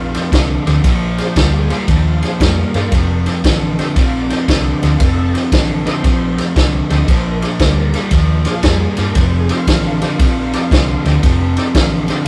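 A rough rehearsal-room sound, with warm saturation and a stone room's reverb, frames this short cut from a swaggering, soulful electric blues shuffle in F mixolydian, swinging at 116 BPM. An up-front overdriven semi-hollow guitar carries a low, picked riff through spring reverb over a round, foam-muted fingered bass and an up-front vintage kit with a punchy kick, a dark ride cymbal and a medium-tuned snare. A bright tonewheel organ shouts its accompaniment lower in the mix through a slow rotary speaker and chorus vibrato, as the chords move between F7 and Bb7.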